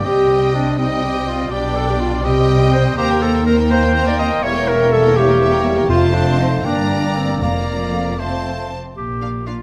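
A cheerful, graceful classical-period orchestral movement in 6/8, cut from a longer piece, where a focused, vibrato-rich violin section carries the melody over second lines from a bright, close-miked clarinet, a clear oboe, an airy, hollow flute and a lush, distant second violin section, with a very quiet viola section and a warm bassoon in accompaniment, sustained chords from a present, soft-attacked French horn section, a bass line from dark cellos and double basses, and hard-mallet timpani entering at 5.9 s, all set in the moderate reverb of a scoring stage.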